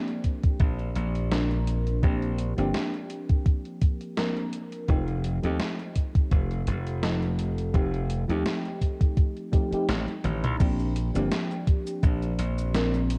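A 4/4 groove with a gentle swing on the sixteenths sets this dreamy, faded vaporwave piece, cut from a longer track. A gated 80s digital drum machine playing cabasa, hi-hat, snare, toms and crash cymbal is soon joined by a thumpy electronic kick that sits up front. The drum machine's snare is soaked in gated reverb, and its sound is tape-warm, as if re-recorded in a small room. A glassy slap bass, bright, direct and punchy, holds the low end from 0.6 s. A mellow FM electric piano carries the chords, soft and round with a noise layer, a fast attack and a decaying tone, dressed in phaser, lush chorus, tape echo and 12-bit sampler grit. The harmony moves from Bb69 to F9 and back, a drum fill at 10.1 s leads into a new section at 10.6 s, and the dark production adds light reverb and a cassette-tape haze.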